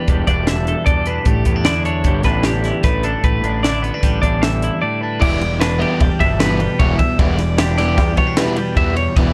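A crisp, up-front fusion drum kit with a high-tuned snare and punchy kick drives this playful, wistful math rock and midwest emo excerpt at 152 BPM in 5/4, with crash, ride and hi-hat cutting through an airy studio room. A twangy twelve-string electric guitar and a bright, clean guitar playing arpeggios with subtle chorus ride over a fuzzy, overdriven fingered bass as the harmony moves from Em7 to A7sus4. At 5.2 s, a biting, double-tracked overdriven guitar riff joins and the chords return to Em7, all within a dark, warm production with little reverb.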